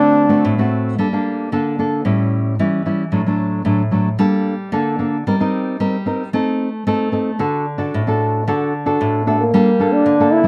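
Bittersweet and yearning, this short samba fragment cut from a longer piece sets a mellow, jazz-style solo trombone up front, heard briefly at the start and again from 9.3 seconds, over a warm, thumb-plucked classical nylon-string guitar that carries the accompaniment throughout in a moderate studio reverb, moving through chords such as Gmadd9, Cm7/G and Adim.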